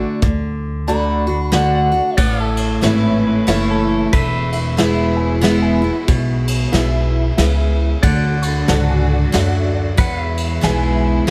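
A light reverb gives this short cut from a longer honky-tonk and classic country piece a down-home, heartfelt glow, moving at 92 BPM in a swung 3/4 lilt in E mixolydian. A twangy, slightly broken-up electric guitar through a small old amp opens with a clean solo, its lo-fi bite trailed by tape echo, and it drops out at 4.3 seconds. Underneath, a jumbo steel-string acoustic guitar sits up front with a bright, full-bodied picked part, while a woody, thumpy pizzicato upright bass and a vintage brush kit with dark cymbals and a punchy kick fill out a pumping small room. A detuned, jangly honky-tonk upright piano comps throughout and adds a couple of fills, and a pedal steel guitar played with fingerpicks holds clean, compressed chords with slide and volume swells. From 2.2 seconds a smooth, bowed studio string section with gentle vibrato settles in the background as the chords move from D to A, E, D and back to E.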